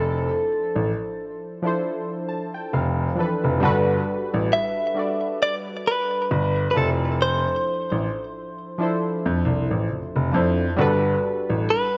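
A clean, picked electric guitar carries the melody with delay over this dreamy, romantic contemporary R&B excerpt at 67 BPM, its direct, compressed tone sitting up front in a gently swung 4/4. Round, detuned analog keys with chorus and a filter sweep fill out the harmony between Dm7/F and Gmaj7, adding a fill from 1.8 to 3.6 seconds, while a smooth, vintage grand piano holds down the low bass line until 11.6 seconds. Light small-room reverb and the warble and pitch drift of worn cassette tape give the whole piece a hazy, nostalgic sheen.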